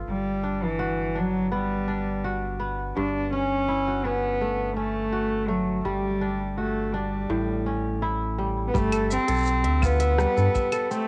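A rich, reedy cello carries the melody in this playful, delicate folktronica excerpt, its gut-string tone and period-style bowing from a single player sitting up front with a cassette-tape grain. Alongside it, a bright, fingerpicked kora rings out crisp arpeggios, colored by cassette tape and tape echo, while a round analog bass blends sawtooth and sine into a deep, dark, sustained low end with a fast attack. The music moves at an unhurried 83 BPM in straight 4/4, set in G lydian with chords drifting from Gmaj7 through Gmaj9#11, G5 and A7 before settling on Fmaj7/G. At 8.8 seconds a tight acoustic kick played with brushes enters alongside a minimal electronic click kit of claves, clicky hi-hat, rim click and shaker, both touched with studio reverb and cassette tape. The whole piece has the intimate feel of a home cassette recording in a small booth with a short, close ambience.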